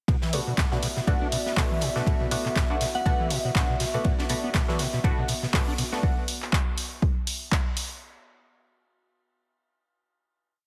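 Hypnotic and raw, this acid house piece moves at 121 BPM in B minor with a swung sixteenth-note feel, holding a single groove on a Bm7 chord. An up-front electronic kick pounds four-on-the-floor from 0.1 seconds to 7.6 seconds, joined by a punchy analog drum machine with handclaps and open hats, while a dry acoustic reggae kit sits in the background with a looped, edited breakbeat on hi-hat, ride and a high-tuned snare, its cymbals pumping against the kick. The overdriven acid bass carries the riff: a squelchy, gritty square-wave line with resonant filter plucks, accents and slides, looping over 12 steps that drift against the bar, thickened by ensemble chorus. Band-passed, nasal sawtooth stabs ring-modulated and run through a phaser and dub echo push dotted-rhythm chords, one shape moved in parallel. Behind them, a moody, wave-folded dark pad holds a high note and a lo-fi, nostalgic tape-like pad warbles through slowly shifting chords, both pumping with the kick. 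Briefly around 2.9 seconds a crystalline FM bell adds short answering phrases with chorus and digital delay, all framed by light reverb and a heavily compressed, radio-like sound.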